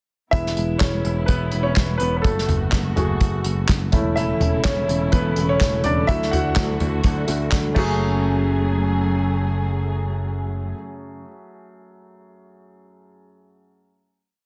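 Piano-driven pop in F# minor at 125 BPM, this short, complete piece feels dramatic and driving, with a light 16th-note swing. A bright concert grand leads from 0.3 s, up front with a brilliant, polished tone, deep bass and short sustain, playing close-voiced eighth-note chords with grace notes over a progression that moves from E through F#madd9, A/E and D. Underneath, an unplugged drum kit played with bundle sticks stomps out a four-on-the-floor pop beat, the medium-tuned snare layered with handclaps alongside a tight kick, hi-hat, toms and crash, while a picked electric bass drives growly eighth notes. Muted strings, con sordino, add a dark, veiled, lush pad with vibrato and a soft attack from a distance. At 4.2 s a jumbo steel-string acoustic guitar joins with a full-bodied fingerpicked riff in open chord shapes. The drums stop at 7.9 s, and the piece closes on a final hit from 8.0 s with the piano ringing out until 14.4 s, all in light small-room reverb and a dense, heavily limited modern master.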